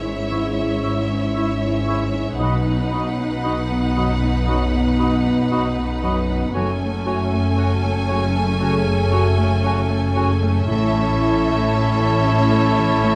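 Cinematic and uplifting, this moving excerpt drifts at a rubato 58 BPM in 4/4, with a rich, vibrato-laden violin section carrying the melody while a more distant violin line, a dark viola section and a mellow French horn section hold the middle over a smooth cello section and a lush, soft-attack double bass section. A vintage-toned grand piano and a very quiet, ringing fingerpicked harp add accompaniment and arpeggios. From 0.3 s a pure, hollow silver flute, a clarinet and a cor anglais join with second lines, all set in light reverb and close, detailed sound as the harmony moves from E6/G# through B and F#madd9 to A.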